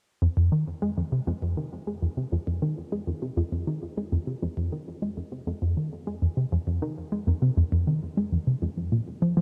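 A straight, driving 4/4 pulse at 100 BPM carries this mysterious, cosmic ambient fragment in F minor, cut from a longer piece, where a tight sequenced synth riff of detuned sawtooth and square wave, with a fast-attack filter pluck and a sustained tail, runs up front from 0.2 to 9.4 seconds between F2 and Ab3, colored by chorus, phaser and delay and shaped by a filter sweep on its arpeggio sound, set in light reverb on cassette tape.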